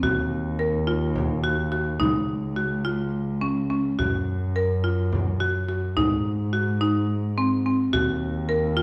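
Hopeful and shimmering, this brief cut from a longer piece of contemporary chamber music in 7/8 moves at 213 BPM in Gb lydian, with a buzzing, bright marimba struck with hard mallets playing arpeggios up front over a veiled, muted cello bass with light vibrato, while a deep frame drum sounds distant until 8.2 seconds, all set in a moderate recital hall reverb with a dark, warm production as the chords pass from Ebm through Dbadd9, Gbmaj7(no3) and Ab back to Ebm.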